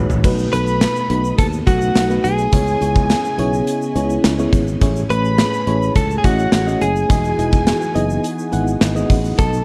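1980s-style pop in E major at 105 BPM, nostalgic and romantic: a gated drum kit with a punchy kick and bright cymbals sits up front from a fill at 0.0 seconds, while a growly fretless bass and a mellow, tremolo-laden FM electric piano carry the B7, C#m7, Amaj7 and Emaj7 changes over a faint, phased organ-string pad and a grainy tube shaker in the background, and from 0.5 seconds a clean, compressed electric guitar melody is paired with a lush, bowed violin section line higher up, both touched with slapback echo.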